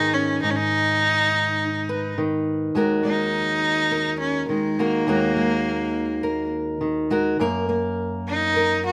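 A close, earthy bowed cello with light vibrato and an airy bow sings the melody over a dark, fingerpicked steel-string acoustic guitar from the very start of this melancholic, intimate acoustic folk fragment in Eb minor at 103 BPM, both up front in moderate studio reverb as the harmony moves from Abm to Ebm, where the cello takes a solo at 2.8 s, and then to Gb at 7.4 s.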